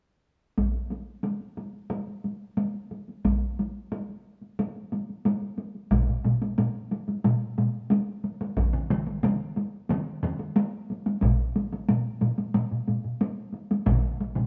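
A straight 4/4 pulse at 90 BPM drives this powerful cut from a longer Japanese traditional taiko piece, where a solo taiko struck with heavy sticks, carrying a vintage, band-limited tone, sits up front beside a full taiko ensemble playing with hard sticks in a small-room sound. At 5.9 seconds a second solo taiko enters, also hit with hard sticks but set in a livelier room, and at 8.6 seconds another hard-stick taiko ensemble joins at a slightly lower level. The whole group plays live together in one space, wrapped in a moderate stone-room reverb.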